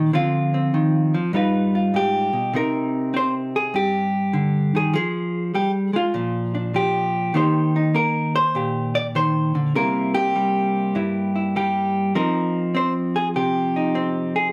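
A wet studio reverb with a short tail wraps this recording, which has the feel of musicians playing live together in one room. It is a solo jazz piece cut from a longer performance, relaxed and sophisticated, moving in an easy swung 4/4. A vintage hollow-body electric guitar carries everything alone, picked and compressed, its tone warm, clean and up front from the first moment to the last at 14.5 seconds. The guitar ranges from a low G2 up to D5, opening on a Dm7 to G7b13 turn before the harmony settles at 2.5 seconds into a longer passage. From there the chords move through Cm9, Fmadd9, Bb6 and Eb6, then pass through C7 to land on an open Fsus2.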